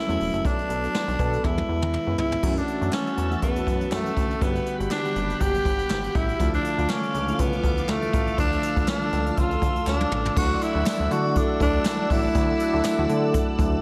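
A raspy, gritty tenor saxophone with light vibrato and scooped notes carries the melody up front through this nostalgic, uplifting slice of 1980s-style pop at 121 BPM, trailed by an analog delay and set in a dreamy mix soaked in plate reverb. Round, gentle electric-piano-like synth keys and a glossy, nasal chorused synth bass sit beneath it, while a jazz brush drum kit with dark cymbals and a boomy kick plays a lightly swung groove with fills, and a barely audible hollow group handclap joins from 2.9 seconds. Mellow, brassy synth stabs appear in the background at the opening accent and return at 11.4 seconds as the chords settle on Dadd9, and a warbling, vintage ensemble organ-string pad holds sustained chords from 2.4 seconds onward.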